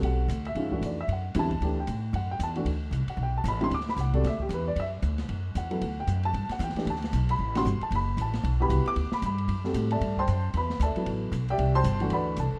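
Modal jazz with a spiritual, searching mood, cut from a longer piece, swinging briskly in 4/4 as a dark, slightly detuned upright piano with audible action noise comps over Bm and D9sus4 alongside a growly, thumpy upright bass and a softer drum kit of dark cymbals and boomy kick, all caught in a rough home demo with light reverb and small-room ambience.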